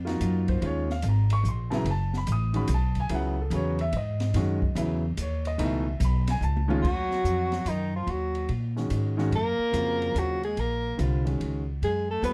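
Spiritual and cool, this modal jazz excerpt swings at 145 BPM in 3/4, cut from a longer piece and moving between Ebm9 and Gbm9 chords. A baby grand piano with long sustain and a natural tone comps up front from the start, while a woody, pizzicato upright bass with steel strings anchors the low end. An open jazz drum kit in a small room adds dark cymbals, a high-tuned snare and a boomy kick, closing the first section with a fill that leads into the second at 6.8 seconds. There a mellow soprano saxophone takes the melody with vibrato and plate reverb, sounding distant and roomy yet up front, and a clear alto saxophone joins beneath it on a second line. The production is dark, warm and dry.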